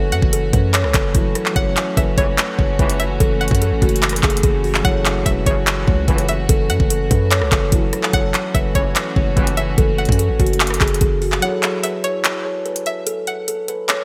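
A half-time trap groove drives this menacing, eerie hip hop cut, its knocking kick, bright hi-hats, handclaps and rim clicks sitting up front with a gated reverb. A hard-hitting 808-style bass adds a punchy, heavy low end. A woody, ringing kalimba carries the melody through a low-pass filter, joined by a twangy, string-like resonator pluck with chorus and delay as a higher second line. Beneath them, a dark, mellow concert grand piano plays accompaniment in the background, softened by lush chorus and a low-pass filter. A reedy studio string section holds sustained chords, and from 2.2 to 9.7 seconds a brass ensemble with light vibrato adds stabs. At 11.4 seconds the strings and 808 drop out for a break, leaving the drums, kalimba, pluck and piano in a small, lightly reverberant room with a bright 1980s-style digital sheen.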